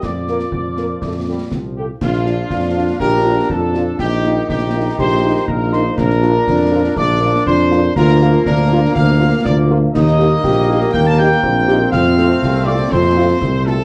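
A straight 2/4 pulse at 121 BPM drives this rousing, proud military-style march for wind band in Bb major, cut from a longer piece, with concert snare drum, clash cymbals with bright cymbals and concert bass drum marking time from the start while an up-front, dark tuba anchors the bass. A mellow, distant trumpet section carries the melody over a pure wooden piccolo and a smooth-topped euphonium on second lines, with a tight French horn section and a roomy trombone section joining at 0.3 s to fill in accompaniment and sustained chords, the brass all in classical style with light vibrato. The sound sits in a wet large-studio reverb and carries the warble and pitch drift of worn old cassette tape.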